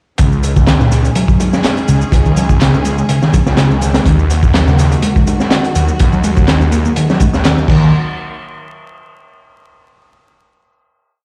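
A crunchy, saturated breakbeat kit sits up front in this gritty, energetic breaks piece: a looped, edited break with a tight kick, a high-tuned snare and dark cymbals, topped by a faint electronic shaker-and-clap layer and very quiet hard-hand congas. A swirling, thick detuned saw bass carries a dub-style line through a phaser, while a round, hollow-body picked electric bass repeats a 32-step riff with delay, and a lush bowed string section pumps in the background over a move from Dbsus2 to Ebm. The drop runs from 0.2 to 7.9 seconds before a final hit, and the piece sounds as if played through a big sound system in a bare stone room, with vinyl crackle.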